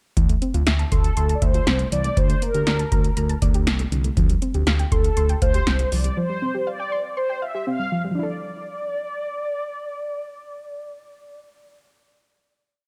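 Synth-pop in D minor at 120 BPM with a melancholic, cool mood, where a soft, round pluck ripples through rising and falling sixteenth-note arpeggios with chorus and delay, a smooth sawtooth bass pulses in eighth notes with slides, a dry analog drum machine adds a deep kick, punchy snare and metallic hats until 6.2 seconds, and a brassy, detuned synth brass carries a motif-based melody over chords moving from Fmaj7/D to a closing Dmadd9 at 8.2 seconds, all in a dark, warm production.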